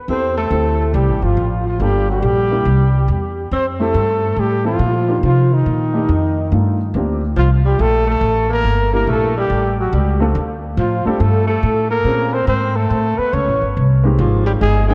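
A dark, breathy trumpet carries the melody up front, its vibrato and scooped notes sitting on a smooth top in a relaxed, swinging small-group jazz setting of swing and bop. Beneath it, a mellow alto saxophone plays a second line with light vibrato and a soft subtone, sounding distant and roomy even as its attack stays punchy, and both horns trail a tape echo. The upright bass is the loudest part and sits up front, its plucked gut strings giving a woody, thumpy pulse. A grand piano supplies accompaniment with an intimate, natural tone, short sustain and audible action noise, dressed in a lush chorus. The harmony moves to a new key centre at 6.9 s as the piece shifts into a second section, and this fragment cut from a longer performance ends at 14.9 s. The whole mix feels dreamy, soaked in a long hall reverb and carrying a cassette-tape character.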